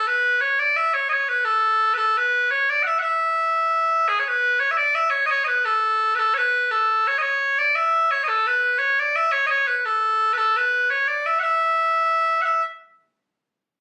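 A 6/8 pulse at 114 beats per minute, felt in dotted quarters with a straight feel, drives this cheerful, lively celtic folk tune. A solo bagpipe carries the whole passage from 0.0 to 12.6 seconds, ranging from G#4 up to F#5 with a bright, piercing, continuous tone that sits loud and up front. The melody states its opening phrase, repeats it from 4.1 seconds, and begins a new section at 12.5 seconds just as the clip ends, since it is cut from a longer piece. The tuning sits slightly below standard pitch, at A4 = 438 Hz. Captured on a phone in the room, the sound carries light club reverb and compression, giving it a raw immediacy.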